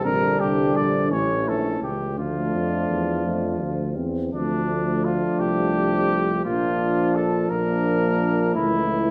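A brass quintet opens together at once, in a stately classical passage cut from a longer piece and set in 6/8. Up front, the trumpet carries the melody with a light vibrato, sounding distant and roomy. A close-miked flugelhorn holds a narrow second line, while a smooth-topped French horn and a dark euphonium fill out the middle voices. A warm tuba anchors the bass with its own light vibrato and a distant, roomy quality. The harmony moves from Gm/Bb through A to Dm, and after a new section begins at 4.3 s it passes through Bb before resting on A/C# near the close at 9.1 s, all within a reverberant recital hall ambience.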